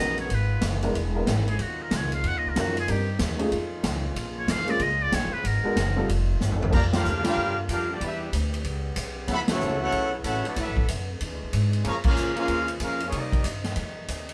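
Big band swing at 187 BPM, energetic and brassy, opens with a buzzy, thin muted trumpet solo over baby grand piano, a background trombone section holding vibrato-tinged chords, woody pizzicato upright bass and a natural drum kit with a punchy kick; after a drum fill at 6.4 seconds, a clear, roomy trumpet section takes the melody at 6.7 seconds with a second trombone section beneath it, and the band hits accents in a small, live-sounding room.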